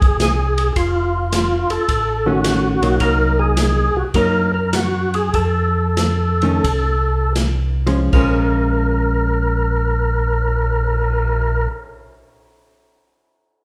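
Swung eighths in 4/4 drive this smoky, bluesy soul jazz organ trio fragment in Bb minor at 75-107 BPM, easing down from 3.0 to 8.1 s over Cm7b5 and F7b9b13 harmonies that settle on Bbm7. A lightly overdriven, percussive tonewheel organ on slow rotary speaker sings the melody up front, while a dark, compressed hollow-body guitar plays clean accompaniment beneath it. A mellow, round second organ with key click and chorus vibrato holds the bass, and an acoustic kit with dark cymbals, a boomy kick and a rolled-off top plays until 11.2 s, the band sharing one live studio room with moderate reverb.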